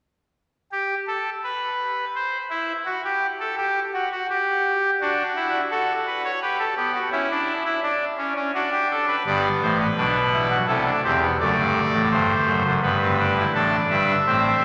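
Joyful and stately, this short portion of a longer classical piece is a baroque-style four-part fugue for pipe organ in G major, moving at 84 BPM in 3/4 with a straight feel. A single pipe organ played on a trumpet stop carries everything from 0.7 to 14.6 seconds, spanning from a deep E1 up to A5. Its tone is brassy and bright, with a baroque voicing and a distinct chiff at the start of each pipe's speech, and it sits up front in the mix. The harmony begins unaccompanied by chords before settling onto D at 5.0 seconds, then moves through G, C#m, D, G, C and D7/F# back to G. A brief new section arrives at 13.5 seconds on an A minor chord just as the passage breaks off. Everything rings out in a wet cathedral acoustic with a long 4.3-second reverb tail.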